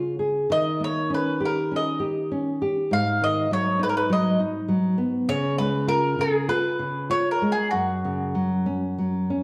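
Mournful and longing, this short fado-style ballad moves with an uneven, rubato feel as a mellow, round mandolin with doubled strings carries the picked melody up front. Beside it, a full-bodied classical nylon-string guitar fingerpicks the accompaniment, with audible finger squeak, through a progression of D#7, G#m7 and C#7 before settling on F#5 at 7.7 seconds. The dark production sits in a wet recital-hall reverb, and the 9.4-second passage is cut from a longer piece.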